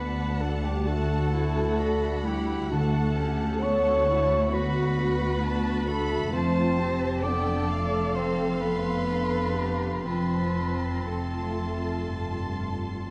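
This uplifting, moving cinematic passage opens at once in a free, rubato 4/4, with a lone vibrato-rich cello and a lush bowed violin section carrying the melody over a second violin line, a pure, hollow silver flute in the background and a smooth viola section beneath. Mellow French horns sustain the chords while a very quiet, ringing harp plays arpeggios, and a focused cello section and distant double bass section hold the bass. A bright solo clarinet slips in with its own line at 0.9 seconds, and the harmony shifts from D to F at 6.3 seconds, all within a dark, warm production and a moderate scoring-stage reverb.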